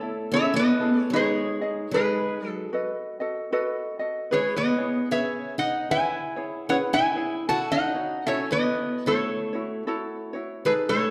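A metallic, nasal resonator slide guitar played with fingerpicks carries the dreamy, languid melody up front in this 11-second Hawaiian fragment at 76 BPM with a lilting swing, as a boxy, picked archtop guitar with audible finger squeak adds a second line beneath and a light, fingerpicked ukulele picks out chords from Amaj7 through G#m, B7, E6 and F#m7, all bathed in the lush reverb of a recital hall and a dark, warm production.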